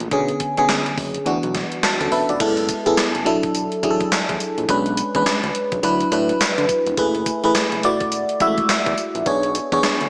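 A swung sixteenth-note groove at 105 BPM in 4/4 drives this confident, bouncy new jack swing cut, taken from a longer R&B piece in B dorian. An up-front, gated 80s digital drum machine runs throughout with a thumpy kick, gated-reverb snare, hi-hat, handclaps, tambourine and crash cymbal, its sampler-style hits carrying a tape-softened edge. Underneath, a fat analog bass holds the low end with a thick, detuned sawtooth-and-square tone, a filter sweep and sustained, mellow notes. A glassy FM electric piano, treated with chorus and phaser, plays bell-like chords over a cycle of Bm69, D69, F#m11 and E9sus4, and it adds a fill from 1.5 to 2.4 seconds just before the second section begins. The whole mix sits in a moderate echo-chamber reverb with a small-speaker character.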